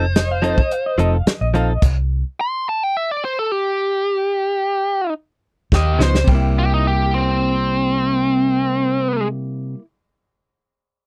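A straight-eighth soul blues groove in 4/4 at 108 BPM struts along in C mixolydian, swaggering and rollicking, carried by a tight-kicked soul drum kit with a roomy, rolled-off top, a round, foam-muted fingered electric bass and warm stabs from a clean, compressed, direct-recorded electric guitar. A biting, overdriven lead guitar sits up front with a bright picked melody, while a second guitar through a small old amp adds a slightly broken-up line with tremolo. The band drops out at 1.8 s, leaving the lead guitar alone until a drum fill at 5.7 s brings the groove back in over a Db9 to C7 change.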